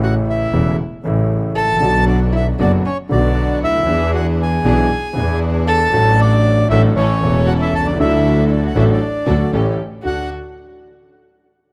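A reedy, dark bandoneon carries the melody up front in this passionate, elegant tango excerpt, played rubato at 117 BPM in D major over an intimate concert grand piano with audible action noise and deep bass, and a clear, biting, nasal bowed double bass. A boxy, sul tasto violin adds a second line in the background, and from 1.8 s a distant, floating string section places soft-attack stabs behind the band. The chords move from A through Bm and E7 toward D as a new section opens at 10.0 s, all captured in a rough home demo mix with small room ambience.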